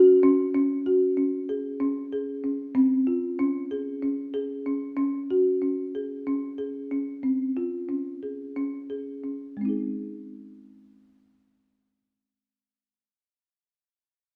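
A folk marimba played with soft mallets opens this playful, hopeful contemporary instrumental, cut from a longer piece, with woody, rustic, round arpeggios up front in uneven 7/8 at 186 eighth-note beats per minute in Ab mixolydian, moving between Ab7sus4 and Dbmaj7 before slowing from 5.0 s and settling on Ab at 9.6 s in a moderate recital-hall reverb.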